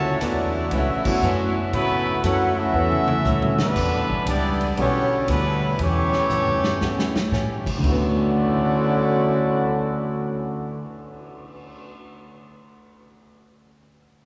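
Bathed in a cavernous cathedral reverb, this energetic, brassy big band swing excerpt at 118 BPM in D major puts a clear, up-front trumpet section on the melody over a trombone section with light vibrato, a woody, thumpy pizzicato upright bass, a vintage drum kit with a punchy kick and rolled-off top that plays fills from 2.7 and 6.3 seconds, a deep-voiced grand piano in the background from 1.1 seconds, a very quiet boxy archtop guitar, and a very quiet saxophone section holding sustained chords that stop at 3.7 seconds.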